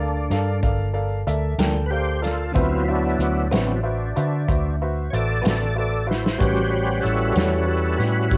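A straight 12/8 slow blues at 62 BPM in D mixolydian moves soulful and gritty through Gm7, D13 and A13 in this short cut from a longer piece, with a thick, overdriven tonewheel organ soloing up front through a slow rotary speaker and chorus vibrato over a clear, woody, slightly detuned upright piano, a round, punchy, foam-muted fingered bass, and a dark, smooth soul drum kit that enters at 0.3 s and plays a fill at 6.1 s, while a compressed, slightly broken-up electric guitar through a small old amp adds tremolo-laced accompaniment in the background from 1.6 s, all in light reverb on a home cassette recording.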